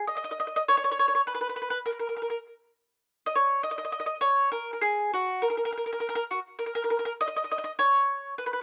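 A lone acoustic mandolin, bright and woody with the shimmer of its paired strings, plays up front in this romantic, sunny Italian folk excerpt, picking in a straight 3/4 at 102 BPM across 8.6 seconds of dry, open-air sound.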